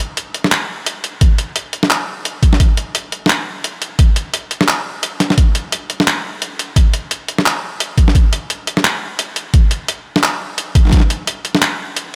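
Drum and bass at 173 BPM in a half-time feel with a swung sixteenth-note lilt, this tense, spacious passage opens on a gritty, pitched-down sampler-style kit of handclaps, hi-hat and a medium-tuned snare, compressed and set up front. At 1.2 s a knocking, overdriven electronic kick arrives, layered and re-recorded in a small room so it sits forward, dropping out briefly at 5.0 s before returning. Light reverb and a digital ambience give the drums an airy space.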